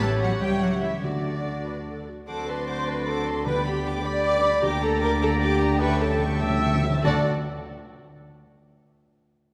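A stormy, restless excerpt from a quick classical-period orchestral movement in 6/8 opens with the full ensemble at once: a sul tasto violin section carries the melody with soft-attacked vibrato over a second violin line, while an airy, hollow flute ensemble, a clear oboe and a very quiet clarinet weave supporting lines, a dark viola section fills the accompaniment, a tight, hushed French horn section sustains chords, a distant trumpet adds stabs, cello and double bass sections anchor the bass, and hard-mallet timpani, articulate in the background, break into a fill from 5.8 to 7.0 seconds, all set in a wet concert-hall reverb.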